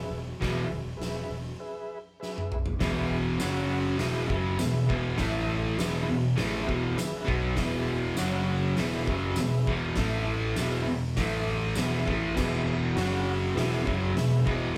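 A rowdy, raw garage rock clip cut from a longer piece, captured as a band playing live in one room with a moderate large-studio reverb that gives the whole take a roomy bloom. At a straight 100 BPM in E major, a bright, double-tracked fuzz guitar sits up front with a compressed, distorted riff, while a fuzz-drenched picked electric bass, direct and amped with overdrive, holds the low end from the start. An oversized, low-tuned acoustic drum kit pounds through a pumping stone-room sound, with a fat snare, punchy kick, dark cymbals and gritty saturation across toms, hi-hat and crash. A vintage combo organ, reedy and clean with heavy vibrato, sustains chords underneath, and a jingly tambourine rattles in the background from 3.4 to 11.9 seconds. After a short break capped by a drum fill ending at 2.8 seconds, the band drives through a repeating pattern that keeps returning to E, with brief moves to F#5 and A5 power chords.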